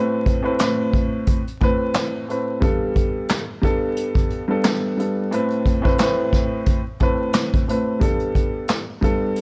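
Vinyl crackle hangs over this moody, tough boom-bap hip-hop excerpt at 89 BPM with a swung 16th feel in A minor, where a dark, mellow concert grand piano with audible action noise and deep bass, dulled by cassette tape and filtering, rocks between Amadd9 and Gadd9 while a vintage brush kit enters at 0.3 seconds with a punchy kick, medium-tuned snare, hi-hat and handclaps in a small, natural room with a rolled-off top.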